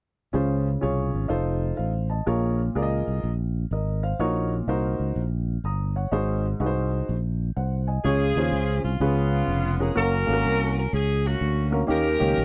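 A woody upright piano with long sustain and a fingered electric bass, amped and direct, open this reverent, uplifting uptempo gospel at 125 BPM, swinging in 4/4 in Db major over rich seventh chords. At 8.0 seconds a bright saxophone section enters up front with the melody, its soft-attack, vibrato-laden jazz voicing lifting the music as the harmony moves toward Gb. The sound is dry and close, with the feel of a 1970s studio, and the passage is cut from a longer piece.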